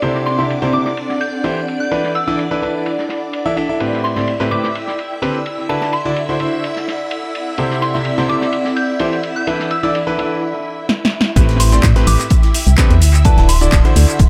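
A straight 4/4 groove at 127 BPM drives this energetic, soulful piano house excerpt in A dorian, cut from a longer piece. From the start, a bright, brilliant grand piano riff sits up front with deep bass and analog delay, over shimmering vintage string-machine violins holding sustained chords, an airy, breathy pad with a nasal, detuned edge, and a dry, lo-fi soul kit of muffled ride cymbal and snare tucked in the background, all pumping against the sidechain. A soft, pure synth bell melody enters at 0.3 seconds, coloured by chorus, phaser and delay, as the harmony cycles through C6, E7sus4, Am9 and D9. A punchy, tape-warm house kit with cabasa, handclaps, hi-hat and snare brings a drum fill at 10.9 seconds, and at 11.4 seconds the drop lands with a punchy electronic kick and a hollow, dark, organ-like FM bass with tube saturation pushed to the front. Moderate spring reverb and small room ambience give the mix an echo-heavy sheen.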